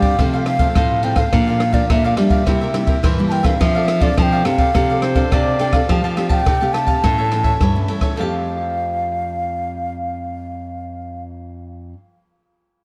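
A straight 4/4 samba-choro groove at 105 BPM in F major, lively and joyful, rides on an open jazz kit of boomy kick, dark ride cymbal and rim click that drops out at 8.2 s. Beneath it sit two fingerpicked classical nylon-string guitars, one up front and one full-bodied, splitting the bass and the chords, with crisp picked cavaquinho. An airy, hollow wooden flute with vibrato and tongued notes carries the melody through a delay, and a distant, roomy clarinet adds a brief second line from 5.0 s to 5.9 s, while a lush hall reverb soaks the mix in a dreamy haze as the chords move from F/C through Bb and C7 to F6, then Fadd9 and A, in this excerpt cut from a longer piece.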